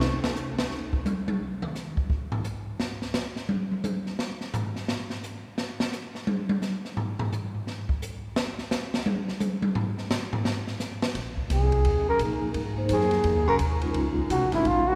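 Smoky and late-night, this fragment of a longer small-group swing and bop piece moves at a brisk 172 BPM in Bb minor with a swing feel. It opens with a dark, boomy drum solo on an open acoustic kit, using hi-hat, kick, ride, snare and toms. The kit sits up front with dusky cymbals and a rolled-off top, while a metallic vibraphone chimes briefly at the start. At 11.2 seconds the tune shifts into a new section, with a thumpy, woody pizzicato upright bass on gut strings arriving under chords of Bb9sus4, Ab7 and Db6. From 11.5 seconds a mellow, breathy flugelhorn carries the melody up front, with light vibrato and scooped notes, over a quieter baritone saxophone line with soft-attack subtone. The ringing vibraphone, with its fast motor vibrato, returns to accompany them, all bathed in a wet cathedral reverb that gives the recording the spacious glow of a church or concert hall.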